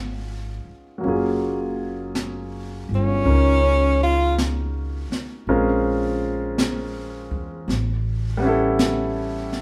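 A breathy tenor saxophone carries the melody in a brief, intimate phrase between 2.9 and 4.4 seconds, its close-miked subtone tinged with vibrato in a true jazz style. This romantic jazz ballad moves at a slow 54 BPM in 4/4 with a swung eighth-note feel, tuned slightly high to A4 = 441 Hz. Beneath it, a warm concert grand piano with deep, natural low end provides accompaniment, while a pizzicato upright bass on steel strings adds a woody, thumpy foundation. A jazz kit played with brushes joins at 1.0 seconds, its brushed snare and hi-hat sounding dark and smooth. The harmony drifts through Db9, Gbmaj9, Bbm7 and A9. The players share one room, with a moderate large studio reverb giving the close, warm ensemble a gentle glow in this short excerpt.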